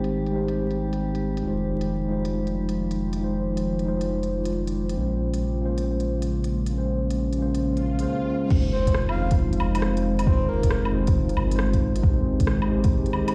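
A swung sixteenth-note groove from a crisp, gritty electronic kit of hi-hat, rim click, woodblock and crash cymbal, muffled by low-pass filtering, carries this ghostly, melancholic future garage excerpt. A round sub bass and a mellow tine electric piano pump beneath a warbling, nostalgic tape-like pad, with a glassy drifting-harmonics texture in the background. After an electronic swell, a soft kick drum enters at 8.5 s and a breathy flute-like synth lead with vibrato and delay sings briefly from 8.7 s, all set in a large reverberant space, heard as if through a big sound system in a bare room, with vinyl crackle on top.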